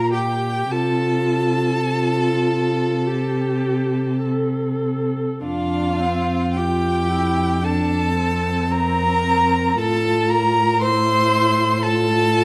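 Classical, this lyrical slow romantic movement for string quartet in F major drifts at 50-59 BPM in a rubato 4/4, with a rich, expressive first violin singing the melody through vibrato, portamento and soft attacks, a smooth, distant second violin carrying an even inner line, a dark viola adding expressive accompaniment with portamento, and an up-front cello anchoring the bass with a warm, steady tone, all bathed in a moderate recital hall reverb across this brief passage cut from a longer piece.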